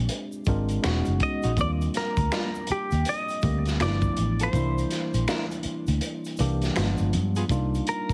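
Heavily compressed with a radio-like squeeze and a moderate studio reverb, this sultry, soulful neo-soul R&B fragment sways at 81 BPM in 4/4 with a swung sixteenth feel. A round, punchy muted electric bass sits up front beside gritty, saturated breakbeat drums with a rolled-off top, while a worn, slightly out-of-tune tine electric piano through a combo amp lays down lush ninth chords in plate reverb, and a tube shaker with handclaps and finger snaps hovers in the background. At 1.2 s a bright semi-hollow guitar carries the melody through phaser, plate reverb and tape echo, joined at 1.4 s by a dark, clean hollow-body jazz guitar second line, and the kick drops out at 6.0 s before returning.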